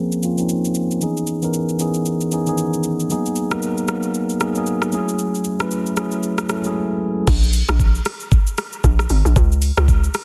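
Hypnotic and deep, this amapiano excerpt moves at 115 BPM with a swung sixteenth-note feel. A mellow, clean tine electric piano carries ninth chords such as Bbm9 and Abm9 under a filter sweep, while an electronic R&B kit of knocking kick, metallic hats, rim click, shaker and crash, its snare softly clipped, drops out from 6.8 to 7.3 seconds. At 7.3 seconds the piano stops and a hollow, bouncy FM log drum bass with a fast attack and decaying tail joins the returning drums for the drop, set in light digital reverb within a dense, heavily limited master.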